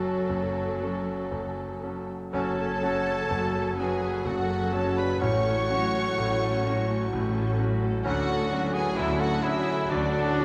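Brooding and tragic, this rubato romantic passage for piano and orchestra in F# minor moves in a slow 3/4 at 58-66 BPM, with a clear, up-front concert grand carrying the melody alongside lush, vibrato-rich violins, while an airy flute section, a mellow cor anglais, a bright clarinet and a second rich violin section weave quiet second lines over violas, a present bassoon, distant mellow horns, and focused cellos with double basses, before a dark trombone section and a clear trumpet with stabs enter at 2.3 seconds, all bathed in a wet scoring-stage reverb as the harmony shifts from F#m to a Dmaj7 at 8.1 seconds.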